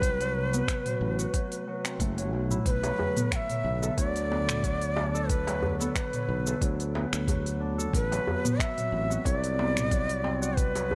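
Lightly reverberant and earthy, this organic downtempo excerpt sets a breathy, chiffy cedar flute melody with vibrato and digital delay up front over a dark, warbling tape-like pad with chorus and sidechain pumping, ringing fingerpicked Celtic harp arpeggios, a bright, growly fretless electric bass with tube saturation, a soft electronic kick, and a small-room electronic kit of cabasa, finger snaps, crisp hi-hat and toms, joined at 2.8 seconds by a tight, cracking djembe.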